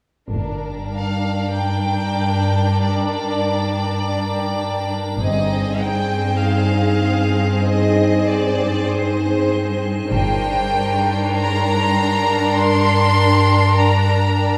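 In free time, this mysterious, tense cinematic excerpt in G phrygian moves from Gm to Ab/G and back, with a focused, up-front cello section holding a low G beneath a smooth violin second line and a higher violin melody, an icy, crystalline glass pad with chorus sustaining chords above, brief bowed double bass notes at 0.3, 5.2 and 10.1 seconds, and a lush symphonic violin texture sitting in the background, all set in a reverberant hall.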